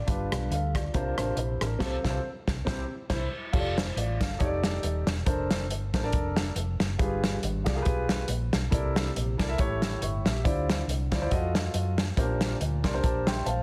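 A dense, heavily limited master set in a moderate recital-hall reverb carries this reverent, uplifting uptempo gospel fragment in F major at 139 BPM with a swung 4/4 feel. An up-front concert grand piano with deep bass comps through rich extended chords, a round, dark hollow-body electric bass anchors the low end, and a soul drum kit with dark cymbals, a tight kick and a pumping room sound drives the groove. The band hits an accent from 1.8 to 3.5 seconds, and a closing piano fill arrives at 12.6 seconds.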